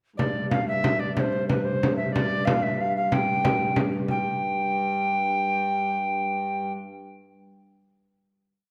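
A reedy alto recorder sits up front and carries a modal, ornamented melody with a crisp, chiffy attack, giving this short medieval dance in 6/8 an ancient, festive character. Beneath it, a dark, woody hurdy-gurdy holds a single low drone from 0.2 to 6.7 seconds, played by one player on its wheel-bowed strings. A small, bright frame drum, struck with soft hands, keeps an evenly spread pattern close to the listener until it stops at 4.2 seconds. The piece gathers pace from the start through 6.0 seconds, and its one melodic section gives way at 4.1 seconds to a sustained final note over the drone. A generous recital-hall reverb surrounds the ensemble, lending the whole piece a sense of a resonant, lofty space.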